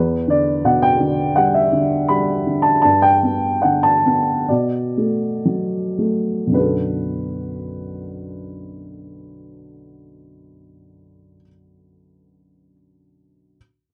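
Classical solo piano in B minor, cool and brooding, played with lyrical rubato in 4/4 at a tempo that drifts between 51 and 84 BPM and slows through the opening 6.5 seconds. A dark upright piano carries the whole piece alone from 0.0 to 13.6 seconds, its mellow, woody, boxy tone sitting up front across a range from B1 to B5 as the harmony moves from Em7 to G to Bm7. Light reverb and a dark production frame this brief fragment of a longer work, with a new section arriving at 6.5 seconds.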